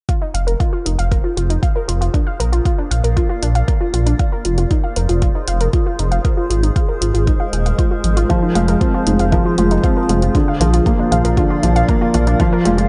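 A felt-muted upright piano, soft and boxy with audible action noise, arrives up front at 8.3 seconds with a dark, delayed riff in this melancholic, intimate piano and strings electronica cut from a longer piece, set at 117 BPM in F dorian over a Fm, Bb and Abadd9 progression. Beneath it, a rumbling detuned saw bass with tube saturation and a deep, layered electronic kick sit forward, joined by a small-room electronic hi-hat, while a warbly, dusty pluck spins lo-fi arpeggios through chorus, cassette tape and delay. A granular cloud pad fades in with blurred, evolving sustained chords and its own reverb, and sidechain pumping moves the pad, pluck and bass under a light overall reverb.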